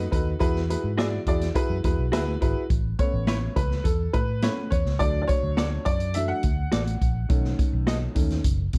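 A clear, woody upright piano with a slightly detuned, boxy character and plate reverb opens this joyful, uplifting cut of uptempo 1960s-style soul at 104 BPM in A major, alongside a round, foam-muted fingered electric bass and a punchy vintage drum kit of hi-hat, kick and snare sitting up front in a natural studio room. Very quiet congas played with soft hands join at 0.7 s, and a clean, compressed semi-hollow electric guitar adds picked stabs with plate reverb from 1.0 s, while the piano takes a solo from 2.7 s over chords moving through Aadd9, D and B7. The production is dark and warm with light reverb, giving this brief excerpt a warm, joyful lift.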